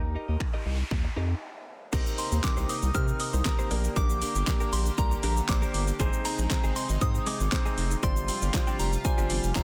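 A straight 4/4 pulse at 118 BPM drives this energetic, driving dance-pop excerpt in C minor, where a round, deep analog bass with sidechain pumping and a punchy, layered pop drum kit from 0.4 seconds (fat, softly clipped snare, metallic hats, crash, snaps, handclaps and shaker) sit up front beneath a polished baby grand piano and a clean, direct-recorded electric guitar riff with subtle chorus. An electronic noise sweep leads into a brief break, and at 1.9 seconds a shimmering, retro pulse-width pad with sidechain pumping and a grainy, very quiet egg shaker enter as the chords move through Cm7, Gm, Ab and G7sus4. At 2.2 seconds a soft, pure FM synth bell carries the melody with chorus and delay, all set in light reverb under a dense, heavily limited modern master.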